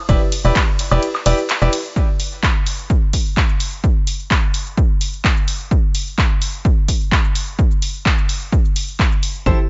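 A straight 4/4 pulse at 128 BPM from a punchy, up-front electronic kick and an analog drum machine of handclaps, hi-hat, ride cymbal, shaker and woodblock drives this bittersweet, soulful piano house excerpt, where a brilliant, vintage grand piano riff with long sustain and tape echo sits over an Em7 chord and a hollow, dark, organ-like FM bass, both pumping with sidechain, before the two drop out at 1.7 seconds and the drums carry on largely alone in a digital ambience, the kick briefly falling away between 1.0 and 2.0 seconds.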